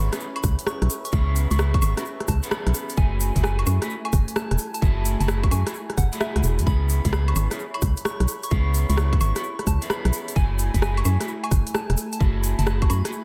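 A late-night, moody two-step UK garage excerpt with light digital ambience, swinging at 130 BPM in C# minor over C#m7 and F#m9, where a tight electronic kick and a crisp-hatted garage kit of hi-hat, rim click and woodblock, both tape-colored and re-recorded in a large room, play alongside a hollow, dark, organ-like FM bass that pumps up front, while dark, slightly broken-up picked electric guitar stabs drenched in lush chorus and delay, a grainy egg shaker, a warbling, nostalgic lo-fi pad with sidechain pumping in the background, and a soft, pure synth bell melody from 0.4 seconds with chorus, phaser and diffuse ambient delay fill out the mix.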